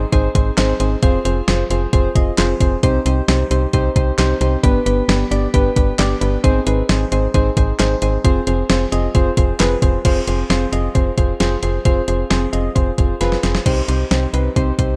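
A clean 12-bit digital drum machine sits up front in this melancholic, cool synth-pop excerpt, its thumpy kick and fat snare joined by hi-hat, handclaps and crash cymbal at a straight 133 BPM in 4/4. Soft electric-piano-like synth keys carry the accompaniment with a round, mellow tone, treated with chorus and a filter sweep, moving through Ab, Fm, Cm and G. Beneath them, a slap-like FM bass adds a snappy, metallic attack that then decays. A drum fill arrives at 13.2 seconds, leading into a new section at 13.7 seconds that lands on Cm. Light reverb gives the short piece a modest sense of space as it cuts off mid-stream.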